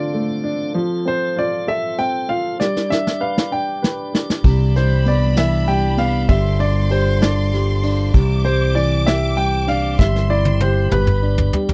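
Romantic and swaying, this six-eight pop ballad excerpt opens with an intimate concert grand carrying the melody over a baby grand's open accompaniment and a piping tonewheel organ on slow rotary, before soft brushed drums arrive with a fill at 2.6 seconds and a round, dark fretless bass and an expressive violin section with vibrato and portamento join at 4.4 seconds, all in a dry, close 1970s-style studio sound with light reverb.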